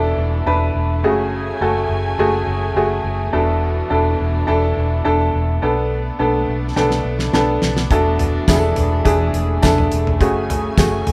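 Hopeful and anthemic, this short piano-driven pop passage moves in a straight, steady 4/4 feel, built on chords that circle from E7sus4 through F#madd9 and Bm7. A bright, slightly detuned upright piano leads the accompaniment up front, its worn, woody tone ringing with short sustain. Beneath it, a vintage foam-muted electric bass sits close and punchy with a dark, round, amped sound, while a muted studio string section holds lush, veiled chords, bowed con sordino with vibrato. The damped 70s drum kit enters at 6.8 seconds with a fill, bringing a fat snare, tight kick, hi-hat and toms in a dry, acoustic sound up front. A jingly tambourine joins in the background at 8.5 seconds, and the whole band sounds as if playing live together in one room with moderate studio reverb.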